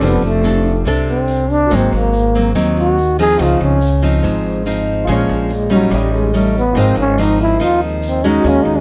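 A breathy, whispered trombone carries an intimate, jazz-style solo from the very start of this smooth, wistful bossa nova excerpt, set up front beside a bright, fingerpicked nylon-string guitar with a classical touch and a woody, thumpy pizzicato upright bass on gut strings, while a warm grand piano sits in the background and a grainy tube shaker sounds distant in a large room, the whole captured by close, detailed microphones with little reverb.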